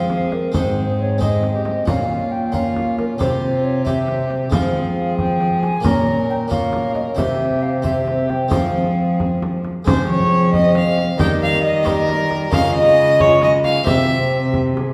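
A solemn, courtly Renaissance-style consort dance in a lilting 6/8 opens with a hollow, breathy tenor recorder carrying the melody over a nasal, gut-strung violin second line, a dark bassoon, a brilliant Italian-style harpsichord and a rich, reedy cello bass, joined at 0.1 seconds by the deep, soft-handed thud of a large frame drum. The consort moves through a minor-key progression, passing a suspended chord and returning to F minor before moving into a second section at 9.9 seconds. The ensemble sounds as if heard from further back in a reverberant recital hall, with a faint mains hum beneath this passage cut from a longer piece.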